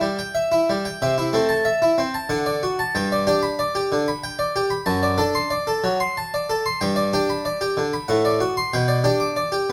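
A solo Flemish-style harpsichord, brilliant, plucked and full, with octave strings, carries this radiant, serene baroque-style suite movement in G major, tuned to A4 = 441 Hz and taken from a longer piece. Played at 93 BPM in 3/4 with a gently rubato feel, it spans F#2 to D6 across 9.7 seconds, moving from a rootless C through D and D7 back home to G. Close, detailed miking keeps the instrument up front, with only a light touch of reverb around it.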